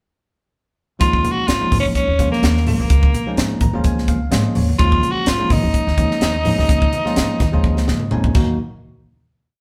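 Electric jazz fusion at 127 BPM with a nocturnal, driving swing, where a raspy, growling tenor saxophone states a motif-based solo melody up front over bell-like syncopated stabs of rootless chords on tine electric piano, a woody, thumpy pizzicato upright bass riff, a punchy, polished fusion kit with dark cymbals and a high-tuned snare playing a funk groove, and very quiet, low-tuned congas, all in a wet studio room, with electric piano fills at 3.4 and 7.6 seconds, a drum fill joining the second, and the harmony moving from Eb9sus4 to Ebm before a final hit at 8.6 seconds.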